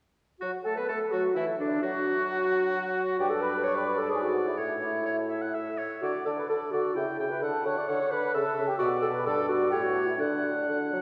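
A quick, graceful classical-period movement in D major and 3/4 at 129 BPM, cut from a longer piece, moves with a cheerful, rubato lilt as a clear oboe, a mellow clarinet and an airy, hollow flute ensemble with vibrato share the second line from 0.4 to 11.0 seconds. Beneath them an up-front, smooth-topped bassoon carries the accompaniment, while harmonies such as Gadd9, E9/G#, C#m7b5 and A/C# pass before settling on D. The sound is bathed in a wet church reverb and small-room ambience, with the worn, warbling pitch drift of old cassette tape.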